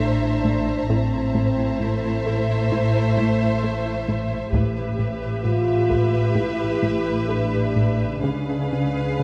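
This eerie, uneasy suspense cue in A minor opens at a slow 66 BPM with everything but the drums at once: a lush, vibrato-rich violin section carries the melody over a clear second violin line, smooth background violas, mellow French horn chords, a pulsing, detuned gated synth texture with chorus, a punchy, funky analog bass riff, and dark cellos gliding underneath alongside rich, expressive double basses. A faint, high violin texture hovers above until 4.0 s, and a heavy-sticked taiko ensemble rumbles in the background from 4.5 s to 6.3 s as the harmony shifts from Am to Em/A, ending on C#7. The dark, warm production sits in a moderate scoring-stage reverb, and this is a fragment cut from a longer piece.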